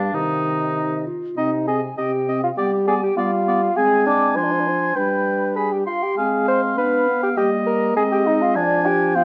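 Classical-period wind quintet music, spirited and lively, heard in a short cut from a quick movement in 2/4 where the distant, hollow flute carries the melody in the background while the warm oboe sings a second line up front. The mellow French horn and present clarinet fill in the accompaniment, and the dark, smooth-topped bassoon anchors the bass up front, with light vibrato in the oboe, horn and bassoon and a crisp attack and vibrato in the flute. A large studio reverb surrounds the ensemble, and a worn cassette-tape quality adds a warbling pitch drift to the sound.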